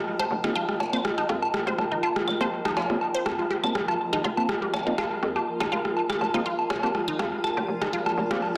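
Minimal techno at 122 BPM in F dorian, sparse and hypnotic, built over a single Fsus4 chord in this short cut from a longer piece, with a light 16th-note swing. Up-front electronic rim clicks, woodblock, cowbell and claves, re-recorded in a large room with soft clipping on the snare, sit over a hollow, bouncy FM bass, while a juicy, squelchy blip pluck with phaser and dub echo carries the riff. A dark, wave-folded organ stab with chorus and echo sits in the background, moving through a filter sweep that lasts the full 8.6 seconds, and a blurred, evolving granular pad glows mellow in a dense, heavily limited mix with moderate plate reverb.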